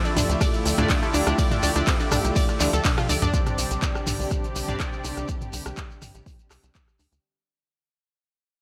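Bittersweet and expansive, this short progressive house cut opens on a drop in straight 4/4, with a dark, woody string ensemble holding distant bowed chords with light vibrato under sidechain pumping and a low-pass filter. A retro, glossy polysynth fires detuned, chorused stabs with tape echo until 5.3 seconds, while a round, warbling analog pluck spins bright arpeggios through chorus and echo before stopping at 3.3 seconds. Underneath, a tight, nasal sequencer bass drives the low end with pumping sawtooth and square-wave tones, and an up-front electronic kick, deep and tape-colored, anchors the groove. A house kit adds crisp hats, handclaps, ride, rim clicks and toms, joined by a tape-warm analog drum machine with congas and toms in the background and a grainy, mellow shekere. After a drum fill from 2.6 seconds, the harmony moves from Dmadd9 to Csus2 as the piece fades out in light digital ambience.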